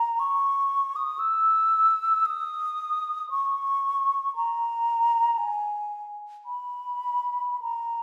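Classical music for unaccompanied concert flute, this short fragment is lifted from a longer piece and carries a mournful, lonely mood. The flute's tone is hollow and pure, with lifted highs, a soft attack and vibrato, and it sits up front throughout the 8 seconds. Its line stays in the upper register, between G#5 and E6, and moves with an expressive rubato over a slow triple metre. The instrument is tuned slightly low, to A4 = 438 Hz. A wet reverb from a church or concert hall surrounds the flute, and its 1.4-second decay lends the lone voice a sense of open, resonant space.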